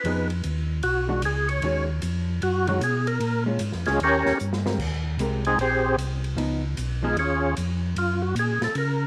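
Swinging in 4/4 at 152 BPM, this smoky, late-night soul jazz organ trio excerpt features a fat, lightly overdriven tonewheel organ soloing up front through a slow rotary speaker with key click and percussion, over a round, mellow organ bass line, a dark, fingered hollow-body guitar comping until 7.2 s, and a small-room acoustic drum kit with boomy kick and dark cymbals that plays a fill at 4.4 s, all in light studio reverb.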